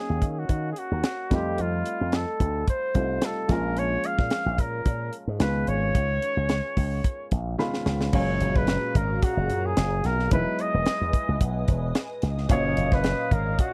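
A vibrato-laced flugelhorn with slapback echo carries the melody up front in this glossy, urban slice of polished 1980s jazz-funk pop, riding over a dark baby grand piano bathed in lush chorus, a punchy slap bass snapping through an envelope filter, and a tight, dry funk kit with bright cymbals, while a hollow, flute-like pad with warbling ensemble chorus slips into the background at 8.5 seconds, just after a piano and drum fill.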